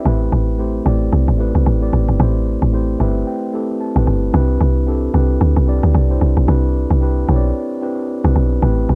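A mellow tine electric piano opens this soulful, late-night amapiano excerpt, its clean tone given a cassette-tape coloring and placed up front. A woody log drum bass arrives almost at once, punchy and dark with a fast attack that decays and a noise layer, sitting low and louder than the keys. The groove moves in 4/4 with a gentle swing on the sixteenths, and the piano fills briefly between 2.7 and 4.3 seconds. Harmony rests on Am9 before shifting to Cmaj9 at 4.3 seconds. Light reverb and the home cassette recording give the short clip an intimate, lo-fi feel, with the piece tuned to A4 = 436 Hz.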